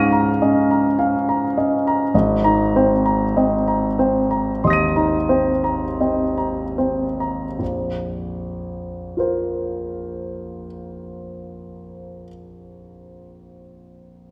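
A concert grand piano, up front with a warm, deep bass, plays alone in this wistful, mysterious fragment of impressionist classical music in Bb minor at a rubato 35-52 BPM, slowing down through its first 7.6 seconds over Db69 and Abadd9 harmonies before turning to a Bbsus2 chord and a new section, all ringing in a recital hall's lush reverb.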